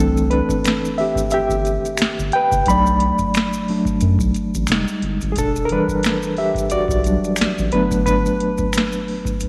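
R&B with a neo-soul lean, this smooth, introspective excerpt moves at 89 BPM in E minor with a swung sixteenth-note feel, drifting through C6, Bm7, Fm9, Em9 and Gmaj9. A reedy, lightly overdriven electric piano with fast tremolo sits up front and solos throughout, over a round, dark analog bass and a booming analog drum machine with a deep kick, tonal snare, metallic hi-hats and finger snaps. Close, dry maracas and finger snaps join at 0.2 seconds, and a moderate echo-chamber reverb lends the whole a roomy glow.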